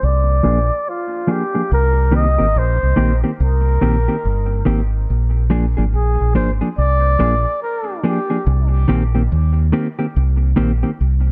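Swung sixteenths at a slow 71 BPM in 4/4 carry this hypnotic, deep dub reggae fragment in C minor, where a round, up-front fingered electric bass anchors the groove from 0.0 s, a clean, compressed electric guitar accompanies from 0.4 s through a low-pass filter and dub echo, and a breathy, whispered flugelhorn with light vibrato sings an intimate melody until 8.4 s under the same filter and echo, while a filter sweep runs across the opening section over Bb7 and Cm7 chords in a dark, lightly reverberant studio sound.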